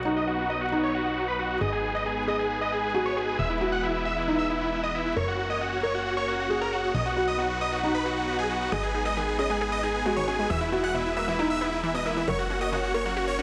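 Emotional, euphoric trance in a steady four, cut from a longer piece, with a huge, detuned supersaw lead carrying the melody up front through a low-pass filter and dub echo, over a lush supersaw pad holding sustained chords and a punchy, funky analog bass. A soft, felt-muted upright piano adds an intimate second line with audible action noise and its own dub echo. At 8.7 seconds a round, nasal analog pluck joins with arpeggios, coloured by chorus, 12-bit sampler grit and echo, all set in light reverb and digital ambience.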